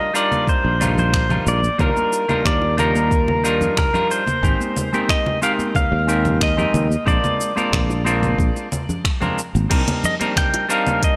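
A lightly reverberant, smooth mix opens this sunset chillout excerpt, moving at 91 BPM in a straight 4/4 in Eb major. Up front, a bright, twangy pedal steel guitar carries the melody with fingerpicked slide and volume swells, its clean, compressed tone trailing tape echo and shimmer reverb. Beside it, a clean, fingered semi-hollow electric guitar plays hollow-bodied accompaniment through the same echo and shimmer, over chords moving from Ebmaj9 to Abmaj9 and Bb7, then settling on Cm9. Underneath, a soft, tape-warm electronic kick and a produced R&B kit of smooth hats, finger snaps, shaker, congas and crash cymbal set a gentle groove, while ringing acoustic congas and bongos sit in the background. A growly, punchy fretless bass holds the low end from just after the start until 9.8 seconds, leaving the last stretch to guitars, drums and hand percussion.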